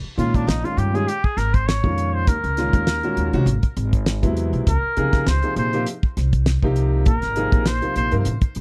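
Opening on a woody, thumpy upright bass, this nocturnal, driving stretch of electric jazz fusion at 100 BPM, cut from a longer piece, quickly adds a damped 70s drum kit with a fat snare and tight kick up front, a concert grand piano with deep bass comping through Bbm7, Ebm7, Ab7alt, Dbmaj9 and Bb9sus4, and a nasal, breathy straight-muted trumpet soloing from a distance with light vibrato, scooped notes and tape echo, all captured in a dry, close 1970s-style studio sound.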